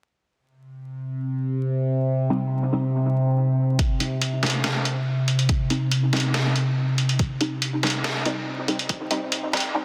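A half-time 4/4 pulse at 141 BPM anchors this heavy, cavernous deep dubstep fragment in C minor: a resonant sawtooth-and-sine drone with slowly moving overtones and chorus sits up front from 0.8 s, a muted, detuned dub chord stab with fast filter plucks, phaser and dub echo joins at 2.3 s, and at 3.8 s a deep, layered electronic kick and a muffled, pitched-down sampler-style kit of hi-hat and compressed snare arrive as the harmony settles on Cm and filter sweeps on both synths drive a build-up, all inside a huge ambient reverb and a dense, heavily limited master flecked with vinyl crackle.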